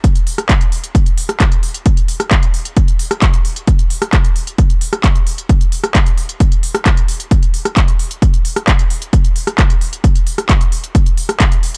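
Techno at 132 BPM in a straight 4/4, this dark, industrial excerpt sets a heavy, overdriven, layered electronic kick drum up front from 0.0 s, alongside a techno drum kit of handclaps, rim clicks and smooth hats with sidechain pumping that runs until 11.8 s, all in a dry, gritty digital ambience with a cassette tape character and a dulled top end.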